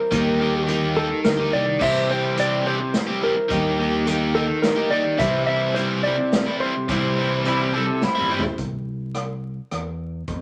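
Hopeful and nostalgic, this short folk rock and heartland rock excerpt moves at 106 BPM in a straight 3/4, set in C major with chords swinging between Eb and C. A clean, twangy lap steel guitar carries the melody alongside a compressed, double-tracked overdriven electric guitar riff placed up front, while a bright, full-bodied dreadnought acoustic guitar with audible finger squeak sits in the background and a mellow, boxy concert grand piano murmurs very quietly beneath. A growly fingered electric bass and a distant, roomy acoustic drum kit played with bundle sticks, with dark cymbals and a punchy kick, hold the groove. Near 7.5 seconds a bright overdriven slide guitar played with fingerpicks adds a brief second line, and a drum fill at 8.0 seconds leads into a closing stretch where only bass and drums continue to 10.4 seconds. Moderate studio reverb and a layer of vinyl crackle give the sound an aged, intimate character.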